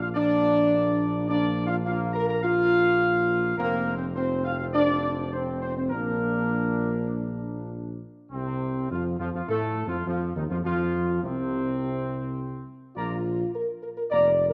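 Regal and solemn, this classical brass excerpt moves at a stately 104 BPM in 4/4 with a straight feel, set in Bb major and cut from a longer piece. A mellow trumpet section carries the melody with a vintage tone, while the French horn section, close-miked and up front, sustains rich chords beneath it. A bright, tight trombone section with light vibrato holds further chords in the background, and a mellow tuba anchors the bass line. The harmony rests on Bb, shifts to an F5 chord at 3.6 seconds, and returns home before a second section opens at 8.3 seconds on F over C, settling back to Bb at 13.0 seconds. A moderate concert hall reverb lends the ensemble a spacious, ceremonial glow.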